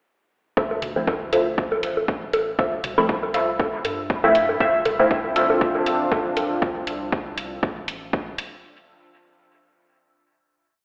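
A swung four-on-the-floor groove at 119 BPM in D minor drives this short, hypnotic and cavernous dub techno piece, with an overdriven, up-front electronic kick and metallic closed hi-hats. From 0.6 seconds a round, soft sub bass glides under sparse, echoing chord stabs built on Dm7: a muted sawtooth riff run through phaser, chorus and tape, a darker, nasal stab layer with a moving notch, and overdriven bongos and toms that repeat through dub echo, with the stabs, bass and percussion all pumping. Around 5.3 seconds a deep, moody pad with slow attack and chorus briefly joins in, all of it set in a lush hall reverb with a stony, telephone-like colour.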